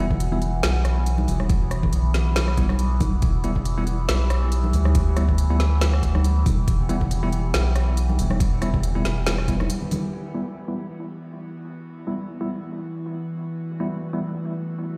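Deep dubstep at 139 BPM in E minor, with a half-time, swung feel that sets a meditative, brooding mood in this fragment of a longer piece. A nasal, sawtooth-and-sine drone holds sustained chords throughout, its moving overtones colored by chorus and its own reverb, while a bell-like tine electric piano places clean stabs through a low-pass filter and dub echo. Beneath them, a round, soft sub bass sits up front with a fast attack, joined by a deep, layered electronic kick, a deep house kit with a woody snare, smooth filtered hats and rim clicks, and bright, thin-skinned congas echoing in the background. After a short break at 9.7 seconds, the bass and percussion fall away, and from 10.1 seconds the harmony shifts from E minor to a bare E chord as a filter sweeps across the drone. The whole mix carries the stony reverb of a big sound system playing in a bare room.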